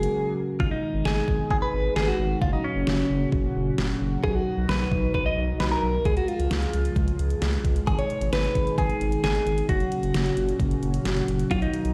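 Mellow sawtooth analog keys sound only until 0.6 s at the start of this cool, driving synth-pop excerpt at 132 BPM in G# dorian, while a clean, picked, direct-recorded electric guitar carries the melody up front through phaser and tape echo over a shimmering, retro pulse-width pad, a round, wave-folded analog bass and an electronic, overdriven pop drum kit with a knocking kick and deep snare, with the mix ringing in stone room reverb as if played on a big sound system in a bare room.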